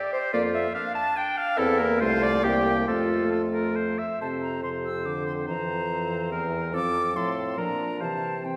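An airy, tongued concert flute with vibrato carries the melody through this spirited, graceful fragment of a quick classical-period wind quintet movement in 3/4 with a rubato feel, alongside a clear oboe second line, a close-miked bright clarinet and a soft-attack, distant French horn in accompaniment, and an up-front mellow bassoon with light vibrato on the bass, the ensemble heard from further back in a wet scoring-stage reverb.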